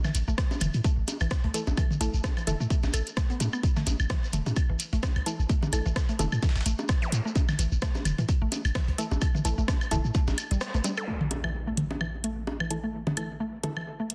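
Minimal techno with a clinical, cool mood, cut from a longer piece, built on an up-front electronic kick, a deep sine sub bass with a pitch-drop attack pumping against it, and a house kit with metallic hats and rim clicks, while a gritty sampler-style kit sits in the background beside grainy shekere and electronic toms, woodblock and bongos thrown into dub echo. A woody, FM-tinged mallet-like pluck carries the riff through chorus and tape echo, joined by muted, detuned sawtooth chord stabs in dub echo. The kick drops out at 10.6 seconds on a band accent, an electronic impact lands at 11.1 seconds, and a filter sweep moves across the synth for the final stretch, all within a dense, heavily limited master.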